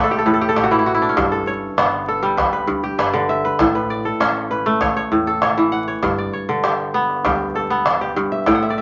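A bright, ringing kora plays crisp fingerpicked arpeggios up front, opening and closing this flowing, warm West African traditional excerpt with fills in G lydian at 99 BPM over A and G chords, while a woody pizzicato upright bass sits dark in the background, a deep, distant calabash enters at 0.6 s, and the recording carries a small-room reverb, vinyl crackle and a top end that stops at 7.5 kHz.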